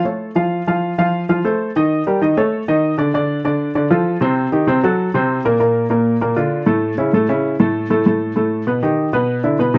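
Set in a straight, even 4/4 at a brisk clip, this short jazz passage, cut from a longer piece, feels sophisticated and fiery. A baby grand piano plays alone for the whole 9.8 seconds, ranging from A2 up to E#5. Its tone is warm, intimate and natural, with a short sustain and audible action noise, and it sits up front. The harmony moves restlessly through colorful chords, from an opening Aaug to F7, Eb7#11, Am7b5 and Bbmaj7, before a brief stretch outside any chord and a final Baug. Light reverb gives the room a gentle sense of space around the piano.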